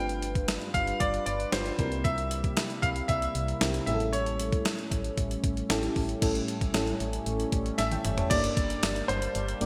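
Steeped in wet hall reverb and bright digital production, this urgent, moody 1980s-style pop excerpt at 115 BPM sets a brilliant, up-front grand piano melody with delay over a lush, detuned FM electric piano layered with a soft pad, an evolving sawtooth pad with a filter swell and chorus, a punchy, round FM bass, and a thumpy 12-bit drum machine with gated reverb, whose fill at 7.8 s leads to a G minor chord at 8.3 s.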